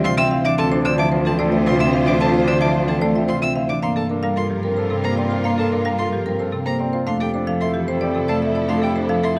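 In a straight triple metre, this hypnotic, meditative stretch of minimalist pattern music moves in steady, repeating figures, cut from a longer piece. A bright, woody marimba with medium hard mallets on rosewood bars carries the melody, while a second marimba with hard mallets on padauk bars sits lower and slightly louder as the percussive accompaniment. A mellow, hollow alto flute with airy vibrato traces a tongued second line from a distance in the background. A warm grand piano and a single focused violin, rich and bowed, spin arpeggios as a lush studio string section holds soft-attack chords with portamento, and a clear solo cello anchors the bass. The harmony settles from a rootless G7sus4 over D into Dm7, shifts to Gm9 as a new section begins at 3.8 s, and moves to Fmaj9 at 7.1 s. Close, detailed microphones capture the ensemble inside a moderate scoring-stage reverb.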